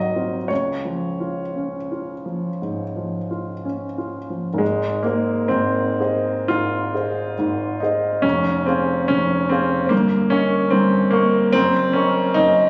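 A warm concert grand piano plays this dreamy, tender romantic nocturne alone in 4/4 with free rubato, its intimate, up-front tone carrying audible action noise, deep bass and long sustain. At 4.6 s the music moves into a second section, the harmony passing through F minor and E-flat seventh colours before the excerpt breaks off at 12.7 s. A moderate recital hall reverb is thickened by a club-style ambience and compression, and the whole sounds as if caught on a phone in the room.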